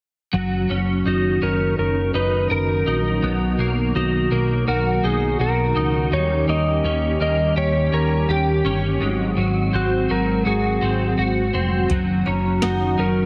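Blissful and floating, this dream pop excerpt in F# major drifts at 83 BPM as a bright, chorus-laden twelve-string electric guitar arpeggiates over a hollow, flute-like pad and a round picked bass through chords from F#6 to Bmaj7, D#7 and G#7, while a clean lap steel guitar sings the delayed melody from 1.1 seconds, a tape-warm vintage rhythm box appears briefly at 11.9 seconds, a metallic vibraphone rings in at 12.3 seconds, and a lush hall reverb and heavily compressed radio sound wrap the whole piece.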